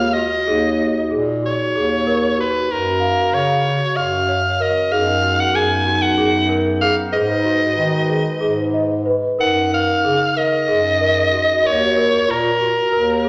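A wet recital hall reverb surrounds this restless, urgent chamber piece in Eb minor, cut from a longer work and driving along at 188 BPM in eighths in an uneven 7/8. A raspy, gritty soprano saxophone sits up front with the melody, punchy and forceful with vibrato, while a mellow, metallic vibraphone played with soft mallets carries a second line in the background, a large celesta rings out bell-like, sweet arpeggios, and a soft-attacked bass clarinet supplies a warm bass. A mellow woodwind section adds sustained classical-style chords that return from 4.9 to 9.4 s over a progression moving from Ebm through Gbmaj7, B/F# and Abm to Gb6 and Ebm7.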